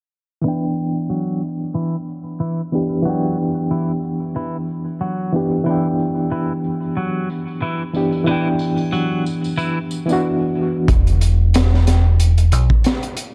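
A dark, smoky trip hop passage with a dusky, low-passed small-room sound, in E minor at 92 BPM with a swung 16th-note feel. From 0.4 seconds a barky, overdriven reed electric piano with tremolo and tape echo plays over an Em7 chord, while a bright, clean twelve-string electric guitar plays compressed arpeggios through its own tape echo; both pass through a filter sweep, and tambourine and triangle sit beneath them. At 10.9 seconds the harmony gives way, and a round, up-front dub fingered bass and a punchy, gritty breakbeat kit with a high-tuned snare take over.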